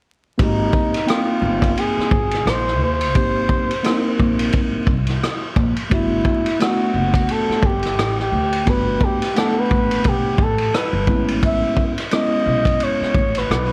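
An 87 BPM groove in 4/4 with swung sixteenths sets up this smooth, cool jazz-hop excerpt from a longer piece. A vintage drum kit sits up front with a punchy kick, hi-hat, rim click and dark ride cymbal, its top end rolled off in a mid-forward studio room sound. Beneath it, a thumpy pizzicato upright bass with gut strings gives a woody low end. A mellow tine electric piano, clean and heard through its built-in speakers, carries the harmony from Abmaj9 to Gmaj9 at 5.9 seconds and on to Amaj9, dropping out at 13.2 seconds. Over this, a breathy, whispered flugelhorn plays the jazz-style solo melody with a soft attack and light vibrato, sounding distant and roomy yet intimate. Light studio reverb and a worn cassette character with vinyl crackle and warbly pitch drift give the whole track an aged, lo-fi haze.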